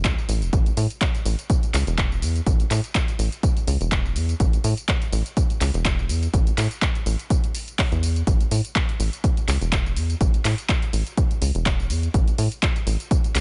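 A sunny, soulful deep house groove at 124 BPM in A major opens with a rubbery, hollow square-wave bass, tube-saturated and pumping against the sidechain, sitting up front between E1 and A2 alongside a punchy analog kick drum re-recorded in a large room. A layered house kit of handclaps, hi-hat and tambourine rides a 55% swing on the sixteenths, with studio reverb on the drums. The sound overall is dry, with its top end capped near 10.8 kHz, and this excerpt cut from a longer piece runs to about 13.4 seconds.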